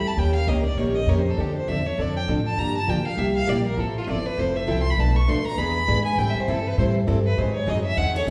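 A wet recital-hall reverb, about 1.3 s long, surrounds this fiery, virtuosic slice of acoustic string swing in the jazz manouche style, moving at 200 BPM in 4/4 with a swung eighth-note feel. A single bowed violin carries the melody as a solo throughout, its tone rich, smooth and even with vibrato, sitting up front. Beneath it, a pizzicato upright bass with gut strings gives a woody, dark, thumpy pulse, also placed forward. Two picked steel-string guitars supply the accompaniment from 0.2 s: a boxy plugged-in parlour guitar and a bright, full-bodied dreadnought with audible finger squeak. A third steel-string guitar, an auditorium model with fresh strings, adds a brief second line in the background at 8.2 s. The harmony moves through jazzy chords such as Dm9, Gm7, C7 and Fmaj7 before turning to Bm7b5, E7 and Am7, and the clip is cut from a longer piece.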